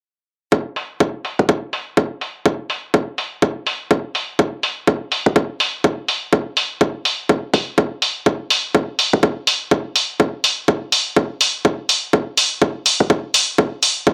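Deep house in a moody, warm vein, this short excerpt cut from a longer piece rides a steady 4/4 groove with a 60% swing on the sixteenths. A punchy, layered electronic kick drum sits up front from 0.5 to 14.1 seconds, tape-warm and re-recorded in a small room, with a high-pass filter shaping both the drum and its room sound. An analog electronic hi-hat joins at 0.8 seconds, also up front, re-recorded in a large room and passed through a low-pass filter on the hats and their room. The two drum parts carry the whole passage on their own. The overall sound is dry and gritty, with little reverb and the grain of a hardware and cassette tape recording.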